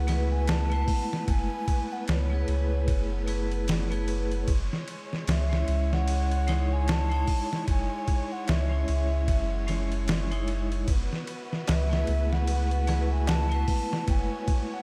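A deep, round dub sub bass sits up front in this dark, brooding trip hop excerpt, beneath a gritty, pitched-down sampler-style drum kit with a thumpy kick, a swung sixteenth-note feel and small room ambience. A mellow, wooden baroque flute carries the melody through tape echo, while a bright vibraphone played with hard mallets rings with fast motor tremolo and a veiled, con sordino violin section holds sustained chords, moving from F#m11 to C#madd9/F# and back. At 11.7 s a clay-shelled darbuka played with soft hands appears in the background.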